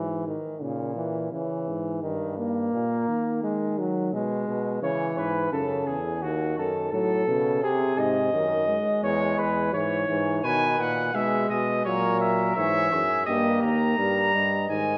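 A roomy scoring-stage reverb surrounds this brass recording, placing the players at a distance in a wet, resonant space. It is a solemn yet driving classical canzona in four, cut from a longer piece and built imitatively as voices join one by one over chords that move through minor and diminished colours. A warm trombone with light vibrato and a bright bass trombone open together, the trombone carrying the accompaniment up front while the bass trombone, also touched with vibrato, anchors the low end. A warm, punchy flugelhorn enters at 4.8 seconds with a second line, and at 10.4 seconds a mellow trumpet takes up the melody, sitting highest and most prominent of the group. The result is a stately, layered ensemble sound that thickens steadily as each brass voice arrives.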